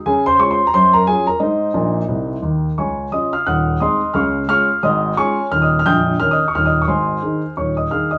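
A dark, mellow baby grand piano sits up front in this swinging, exuberant stride jazz, playing solo from 0.1 to 8.2 seconds and spanning a range from Bb0 to G6. The tempo is a brisk 176 BPM in 4/4, with a 60% swing on the eighth notes and a home key of Db major. The piano's long sustain blooms into a wet small-room reverb, giving the sense of a live performance captured in one intimate space. A short fill from 1.8 to 2.8 seconds closes the opening passage, leading into a longer second section that moves through Ab7/Eb, Db and Eb7 before settling on Ab. This brief cut is taken from a longer piece.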